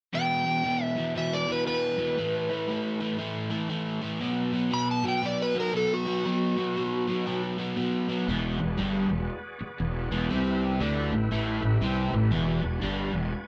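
Rock at 118 BPM with a swung, raunchy and driving feel, this excerpt opens with a crunchy, double-tracked overdriven guitar riff and a dark slide guitar melody up front. The slide drops out around 7.4 s, and at 8.3 s a growly fuzz bass arrives along with a thick, gritty tonewheel organ on slow rotary speaker holding sustained chords, all in a small, reverberant room.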